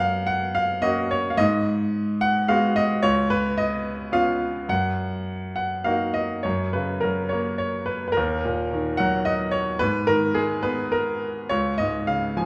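A bright grand piano opens alone, its tone brilliant and open with a short sustain, placed up front in the listening space. This is lyrical classical solo piano in a lilting triple metre, played with a relaxed, flexible rubato that gives the phrases an easy, unhurried breath. The harmony moves gently from F# through G#m7 and C#7 to F#6 before the opening idea returns at 6.5 seconds, now turning toward D#m, G#madd9 and finally C#. The piano spans from C#2 in the bass up to G#5, filling the range with a calm, warm glow. A wet recital hall reverb surrounds the instrument, giving the feel of a church or concert hall, and the passage ends at 12.5 seconds as a fragment cut from a longer piece.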